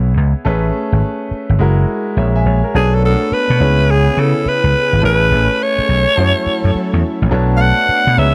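This confident, punchy R&B excerpt has a swung sixteenth-note feel and is cut from a longer piece. A clear concert grand piano with a natural tone and deep low end plays the accompaniment from the start, alongside a vintage slap bass that sits up front with an amped, electric sound. The piano plays a short fill at 1.9 seconds, leading into a new section at 2.7 seconds, where a brassy analog pad enters in the background with bold, full-bodied, detuned sawtooth chords, a soft attack, a filter swell and chorus. At 2.8 seconds a breathy alto saxophone takes the solo melody up front; it is bright, raspy and gritty, with vibrato and scooped notes in a pop style. Extended chords such as Amaj9, F#9 and Bm9 colour the harmony, and the recording carries a small room ambience.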